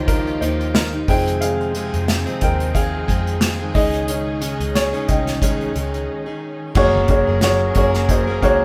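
A woody, up-front upright piano leads this earnest, dramatic piano-driven pop fragment with a solo, set over lush, bowed symphonic strings with vibrato, a full-bodied picked dreadnought acoustic guitar riff, a dark, round foam-muted electric bass and an airy, polished acoustic drum kit played with bundle sticks, all with a light swing in a moderately reverberant room, before a break at 6.1 seconds gives way to a very quiet electronic impact at 6.8 seconds.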